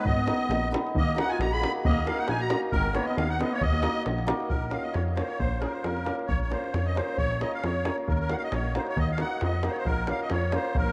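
Balkan folk in a wedding-band vein at 135 BPM in a swung 2/4, this bittersweet, virtuosic excerpt sets a reedy, shimmering musette accordion with delay up front over a punchy, ring-modulated analog bass, a tight, vintage davul and a bright, ringing hammered dulcimer, while a warm, distant clarinet with delay adds a classical-style second line until 4.0 s, just before the key moves from Eb minor to Bb minor at 4.5 s, all in a dreamy mix soaked in plate reverb.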